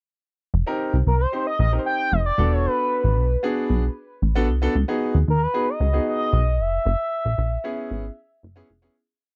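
Funky and danceable, this short early-eighties boogie funk piece rides a punchy, dark analog bass line full of slides and chromatic approach notes, while a clear baby grand piano adds syncopated rootless chord stabs with grace notes and a smooth, nasal synth lead with chorus and vibrato sings motif-based call phrases from 1.1 seconds, captured dry and close in a 1970s-style studio sound before a fade-out from 6.9 seconds.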